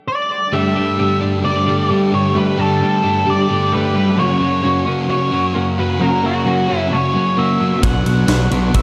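Shoegaze-leaning dream pop rock with a wistful, dreamy mood, this short excerpt cut from a longer piece moves at a straight, steady pace. An octave-fuzz lead guitar carries the melody up front from the very start, its distorted tone trailed by delay. From 0.5 seconds the rest of the guitars gather beneath it: a thick, dark fuzz guitar riff thickened by ensemble chorus, an overdriven semi-hollow guitar riff with a hollow-body glow and reverse reverb, and a bright, clean twelve-string electric guitar picking compressed arpeggios in the background with subtle chorus and delay. The harmony drifts from Gsus2 to F# before settling on Bm, and at 7.8 seconds a growling, overdriven picked bass and a huge arena drum kit with a punchy kick, medium-tuned snare and ride cymbal come in together. The mix is soaked in plate reverb over a small room ambience, giving the layered guitars a hazy, enveloping sheen.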